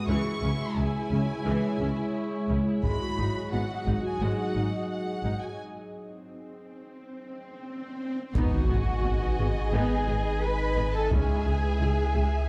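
This vast, brooding cinematic cue from a hybrid orchestral and electronic film score opens at 87 BPM in G# minor with a lush, bowed violin melody over smooth, even violas, woody, distant cellos, rich double basses and a mellow, evolving wavetable pad with chorus. Heavy-stick taiko sit in the background from 2.8 s. An electronic swell begins at 6.8 s during a break and leads into an impact at 8.4 s, where a second violin line, a very quiet, roomy French horn section and a deep, thick, saturated sub bass join in a dark, warm scoring-stage space.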